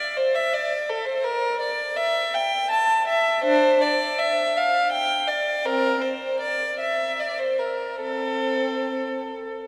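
A baroque-style suite movement for unaccompanied violin in 3/4, this short cut from a longer piece feels flowing and radiant, with a freely breathing rubato pulse. A single bowed violin sits up front, smooth and even with vibrato, its tone rich across the span from C4 to A5 for the full 9.7 seconds. A cathedral reverb with a 4.6-second decay wraps the line in a vast, echoing space, while a faint mains hum lingers beneath.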